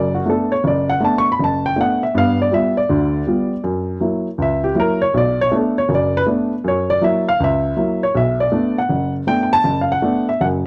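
A dark baby grand piano carries this short solo jazz excerpt alone, its mellow, intimate tone sitting up front with audible action noise and a short, natural sustain. The mood is moody yet swinging, moving at 160 BPM in 4/4 with a 65% swing on the eighth notes, in B minor. The piano spans from F#1 up to C#6, working through a progression that opens on Bm7 and passes through G7 and F#7 before returning to Bm7. A new section begins at 8.1 seconds, landing on Bm7 once more, and the passage ends at 10.7 seconds as a fragment of a longer piece. The sound is dry and close, in the manner of a 1970s studio recording, with only a small room's reverb around the instrument.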